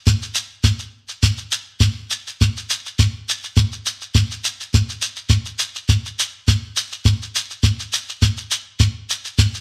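Highlife in a sunny, joyful mood, carried by a lone shekere in straight 4/4 time that plays from the opening moment through to the close of this short fragment cut from a longer piece. The shekere sits close and dry, up front, with a grainy, mellow acoustic character, while the room around it carries a lively studio reverb that gives the sense of a band captured live together.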